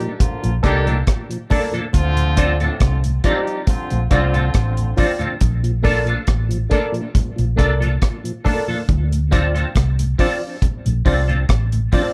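A straight 4/4 roots reggae groove at 69 BPM in Bb major rests on a Bbmaj7 chord with a sunny feel, anchored up front by a dry, dark drum kit of hi-hat, tight kick and rim click and a round, foam-muted vintage bass, while very quiet bright congas, a clean twangy guitar with ensemble chorus and tape echo, gritty reedy electric piano stabs with fast tremolo, a mellow tonewheel organ with slow rotary speaker and chorus vibrato, and a clear horn section in octave doubling that plays only until 4.9 s fill out the sound inside a moderate club reverb.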